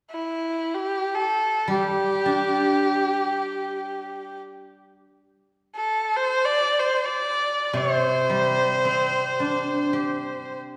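A rich, biting erhu carries a festive, graceful melody in free time over a G zhi mode, its light vibrato and portamento sitting up front from 0.1 seconds while a silvery, ringing steel-string zither played with fingerpicks joins at 1.7 seconds beneath it, the pair set back in a wet concert hall reverb in this brief cut from a longer traditional Chinese chamber piece.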